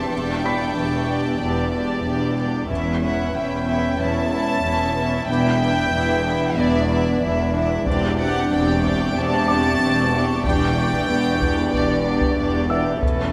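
Ominous and eerie, this excerpt from a suspense film score unfolds in a steady 4/4 over a brooding, slowly shifting harmony anchored on a low E. A distant, floating violin section carries the melody up high. Beneath it, an intimate chamber violin section with vibrato traces a second line, while woody violas provide accompaniment and shadowy French horns hold sustained chords in the background. Pure-toned cellos and double basses ground the bass, joined by a calm, organ-like sine drone treated with ensemble chorus, phaser and its own reverb. A soft, felt-muted upright piano adds mellow high figures with audible action noise near the opening and again from 9.5 seconds, and a close, bowed violin section lends a further floating texture. A close, acoustic taiko ensemble struck with hard sticks punctuates the scene briefly at 2.7 seconds and returns from 7.9 seconds, all set in a wet scoring-stage reverb.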